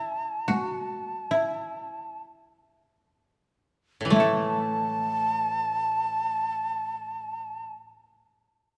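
A reverberant recital-hall sound frames this austere, still excerpt of Japanese traditional chamber music, moving at a free, rubato 33 BPM in 4/4 and slowing through its first few seconds. Up front, an end-blown bamboo shakuhachi carries the breathy melody with vibrato and a tongued chiff, beside a mellow, woody koto playing a second line with fingerpicks, while a close, dry taiko ensemble struck with hard sticks sounds from 0.5 to 5.0 seconds. A brighter second koto enters at 4.0 seconds as accompaniment in a lower register.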